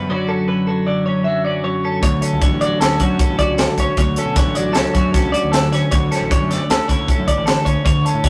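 A straight 5/4 pulse at 154 BPM drives this playful, intricate excerpt of math rock and midwest emo in D major, where two bright, twangy, compressed twelve-string electric guitars, one picking accompaniment and one up front with arpeggios, ride over a fuzz-laden, overdriven picked bass through Dmaj7/F#, Dmaj7 and a rootless Bm9, until a crisp fusion drum kit with a high-tuned snare, tight kick and gritty, pumping small-room sound enters up front at 2.0 s, all wrapped in a moderate stone room reverb and a rough rehearsal-room recording with tube saturation.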